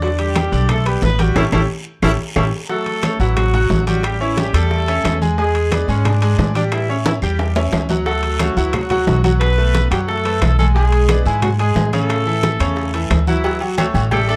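Salsa with a festive, danceable drive, this brief cut features a punchy horn section carrying the melody up front with light vibrato and plate reverb, a brilliant grand piano comping with audible action noise and long sustain, and a thumpy, woody upright bass played pizzicato, while hard-hand congas, ringing timbales and agogo bells, quiet tight bongos and cowbell, a raspy guiro and woody claves fill out the percussion, with a band accent at 1.4 seconds and a drum fill at 7.1 seconds, all in a dark, lightly reverberant production.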